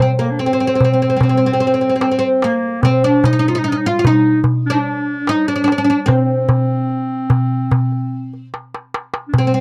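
A woody, fretless oud, plectrum-plucked on double strings, opens this longing, soulful fragment from a Turkish makam ensemble piece in straight 4/4; a clear, smooth-topped clarinet in classical style joins with a second line at 0.2 seconds, followed by a crisp metal-shell darbuka played with soft hands, each sitting up front in a dry, close 1970s-style studio sound with little reverb, before the darbuka plays a fill at 8.5 seconds.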